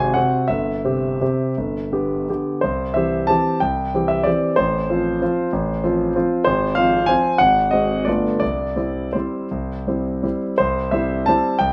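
A playful, sparkling classical piano waltz in C major, taken from a longer piece and moving in a flexible, rubato 3/4 that ranges between 157 and 201 BPM. A clear concert grand plays alone and up front throughout, its deep bass and long sustain spanning G1 to C6 as the harmony moves from Ab7 through C, F/A and Fm/Ab before reaching G9 and coming home to C at 8.4 seconds. A moderate stone room reverb gives the natural tone an airy resonance, and the opening phrase begins again at 10.6 seconds.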